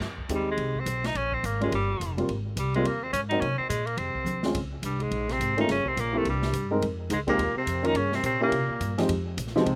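A bright, punchy tenor saxophone carries the melody up front in this moody, smoky excerpt of small-group swing and bop, its vintage, forceful tone colored by vibrato and a slapback echo. Beneath it, a pizzicato upright bass with a woody, steel-strung sound anchors the harmony, while a warm, natural upright piano, also touched by slapback echo, supplies the accompaniment through a dark run of minor and altered chords. The acoustic drum kit sits further back, airy and polished, with dark cymbals, a medium-tuned snare and a boomy kick, and it breaks into a fill at 4.3 s. At 4.0 s a breathy baritone saxophone joins with a second line, its mellow subtone, soft attack and vibrato giving a whispered, intimate shade beneath the tenor. The overall sound is dry, with little reverb and an open-air feel.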